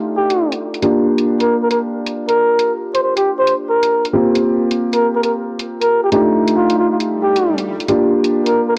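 A dry, gritty cassette-tape sound with light reverb frames this moody, skippy two-step UK garage excerpt at 136 BPM in G minor, swung on the sixteenths. A dark, boxy grand piano plays up-front stabs through a low-pass filter and tape echo over chords moving between F13, Gm7 and C7sus4. Meanwhile, a bucket-muted trumpet carries a veiled, breathy, whispered jazz solo with scooped notes and its own tape echo, above bright, layered electronic hi-hats filtered low, and an electronic swell sits in the background from 7.2 to 7.9 seconds.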